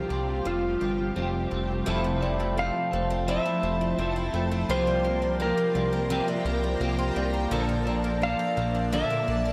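A clean lap steel guitar carries the melody in this floating, dreamy dream pop excerpt at 85 BPM in F major, its fingerpicked slide line compressed and trailed by tape echo. Up front, a picked twelve-string acoustic guitar spins boxy, octave-doubled arpeggios with a little finger squeak, thickened by analog chorus and its own tape echo. A clean electric guitar fills in the accompaniment through harmonic tremolo and ensemble chorus, while a shimmering ambient pad holds ethereal, bright sustained chords with slow attack, phaser and built-in reverb. Underneath, a fat analog bass sits up front with a detuned sawtooth tone, a quick filter pluck and tube saturation. A large celesta adds a very quiet, bell-like touch from 2.2 to 5.0 seconds as the harmony moves from Fadd9 through Fmaj7 and C7sus4 to Bbmaj7, all captured in a dry, gritty recording.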